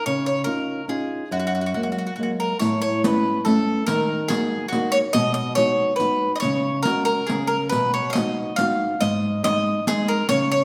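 Moving in a rubato 3/4 at 141 BPM, this short excerpt of an Italian folk serenade has a sunny, romantic air. The mandolin carries the melody from the first moment, its picked double strings sounding bright and woody, up front in the mix. A fingerpicked nylon-string guitar enters at 0.1 seconds to accompany it, dark and small in tone and also close to the listener. At 2.6 seconds the opening section repeats and a riq joins, its jingles bright but with a vintage, band-limited character that sits behind the strings. The harmony drifts through colored chords such as C#add9, F#add9 and Aadd9 before settling toward B and G#, with a brief unharmonized moment near 7.3 seconds. A generous scoring-stage reverb surrounds the ensemble, giving the playing a lush, spacious glow.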